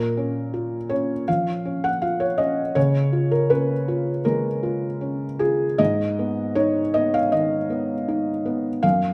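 Neoclassical minimalist piano in G# dorian at 80 BPM with a rubato feel, this wistful, melancholic excerpt features a solo felt-muted upright piano, soft, mellow and intimate up front, ranging from F#2 to F#5 over A#m, C# and G#m chords in a moderate recital hall reverb.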